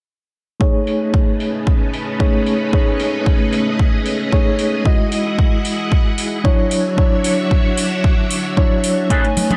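This sunny, groovy nu-disco excerpt at 113 BPM opens at 0.6 s with a reedy, mellow electric piano, a lush string machine and a punchy electronic kick arriving together in B mixolydian. The electric piano sits up front with a fast tremolo, sidechain pumping, dub echo and a filter sweep through a low-pass filter. Beneath it, the vintage, full-bodied string machine holds slow-attack sawtooth chords with a sub octave, ensemble chorus and its own pumping. Metallic, tape-toned electronic hi-hats join soon after under a low-pass filter, while the harmony moves from B13 to Emaj9 to Dmaj9. Near the close, at 9.1 s, a bright, twangy electric guitar played through an envelope filter picks a clean riff with chorus and dub echo, and close, dry congas played with hard hands enter just before the cut. Digital ambience surrounds the mix.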